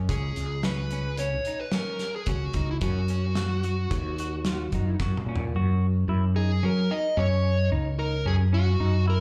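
A round, up-front fretless bass opens this bright, driving progressive instrumental in 5/4 at 110 BPM in F# major, joined at once by a dark, overdriven lead guitar carrying the melody with slapback echo and delay, a scooped, compressed clean guitar picking arpeggios with its own slapback, and a loose indie drum kit with a punchy kick and rolled-off top whose fill at 5.0 s leads into an F# mixolydian passage at 5.5 s where the drums drop out, the performance captured as a live gig through a venue PA with club reverb and a faint mains hum.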